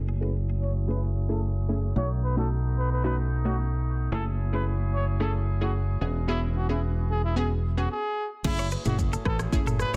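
Afrobeats with a sultry, smooth feel, this short cut opens on a punchy, up-front fingered electric bass and a close-miked woodwind section holding clear, tight chords, while a round sawtooth analog pluck with chorus and a filter sweep adds a fast-attack, short-decay accompaniment. A mellow solo trumpet with light vibrato carries the melody through a touch of delay, and after a brief stop the electronic afro-pop drum kit arrives at 8.4 seconds with a deep kick, rim clicks, shaker, toms and crash, joined at 8.6 seconds by a bright, twangy clean electric guitar riff with delay. The dense, heavily limited mix sits dry and close.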